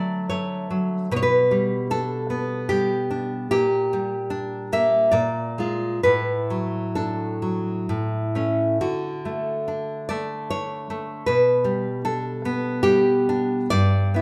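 Set in a three-beat metre, this romantic piece for solo classical guitar moves with a free, rubato feel that lets time stretch and breathe. The nylon-string guitar carries everything alone, fingerpicked with a bright, fresh-stringed tone and a deep classical character, placed up front in the sound. Its mood is nostalgic yet sunny, with the harmony drifting from D through G/B into a darker Gm/Bb and Bb7 before settling via D/A and A back home to D. Around 11.3 seconds the progression returns to G/B and comes to rest on G at 13.7 seconds. A moderate recital hall reverb gives the guitar a natural sense of space, and this short passage is cut from a longer piece.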